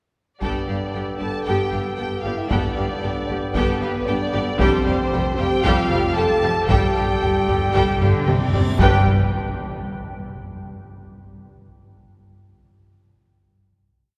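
Adventurous and triumphant, this epic orchestral film cue in G mixolydian drives forward at 115 BPM in a straight 4/4, with a rich, lush studio violin section carrying the tune doubled at the octave over a second violin line and clear, intense violas playing driving rhythmic ostinatos, while mellow French horns and dark, distant woodwinds hold sustained chords. Below, distant cellos push a driving bass ostinato and answer at phrase ends, doubled very quietly by expressive double basses, as a close, dry taiko ensemble pounds a big drum ostinato with heavy sticks. A very quiet timpani roll enters at 6.7 seconds, building with a drum fill and a huge, bright reverse cymbal toward a low impact at 8.8 seconds, where the final chord rings out into a wet cathedral reverb.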